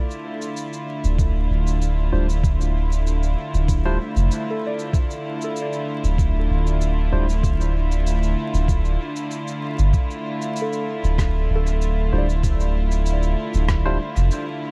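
Ambient dub in D minor at 96 BPM, this meditative, deep excerpt from a longer piece rests on a single Dmadd9 chord over a bed of vinyl crackle. A dark string section holds sustained chords throughout, its bowed, sul tasto tone floating with a soft attack and a smooth top. The round, soft sub bass enters at 1.0 seconds and sits up front with a touch of tube saturation. A muffled, pitched-down kick thumps beneath, with compressed, tape-toned cabasa and rim click trailing dub echo. A barky, clean tine electric piano adds stabs from 2.1 to 7.3 seconds and again near the end, while a mellow FM bell, hushed in the background, plays arpeggios with chorus, phaser and dub echo from 4.0 seconds on.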